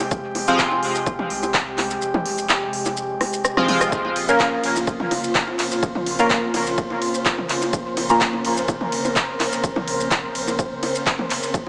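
Hazy and deep, this dub techno excerpt moves in a straight 4/4 over a shift from F minor to B-flat minor. A punchy analog kick sits up front beside a smooth, layered deep house kit of handclaps, hi-hat, ride, rim click and shaker that trails dub echo. Overdriven electronic bongos and toms, also echoed, sit in the background with the round sine sub bass, while an airy, breathy pad holds bright, chorused chords that pump against the kick. The kick drops out at 2.0 seconds and returns at 3.9 after a drum fill. A juicy, detuned polysynth with a resonant filter sweep fires a brief stab near the start, then carries chorused, phased and echoed stabs through the middle, and a flickering, grainy granular texture enters at 5.2 seconds. A moderate room reverb, vinyl crackle and a small-speaker tone give the whole a worn, lo-fi haze.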